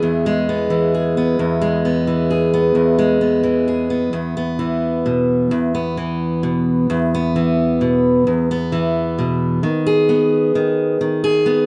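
A solo fingerpicked steel-string acoustic guitar opens this short folk excerpt in E major, moving at 131 BPM in a straight 3/4 with a pastoral, gentle mood. The guitar sits up front with a bright, concert-style tone, ranging from E2 to G#4, and a finger squeak is audible in the playing. Light reverb surrounds the instrument as the harmony settles on E before shifting to B6/D# at 9.6 seconds, and the passage is cut from a longer piece.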